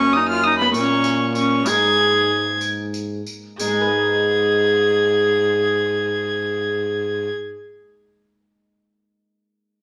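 A nasal, reedy violin carries the melody up front in this short cut from a rustic, courtly renaissance-style consort dance in G# minor, moving in a slow 6/8 at around 60-69 dotted-quarter beats per minute and slowing through its opening section. A gut-string viola plays the second line beneath it, while a dark trombone with light vibrato holds the bass and a thumb-plucked Celtic harp rings out in the accompaniment, ending just after the others at 7.6 seconds. A jingly, band-limited tambourine joins from 0.7 to 3.9 seconds, and the consort sits in a wet stone room as the harmony shifts from F# to G# minor.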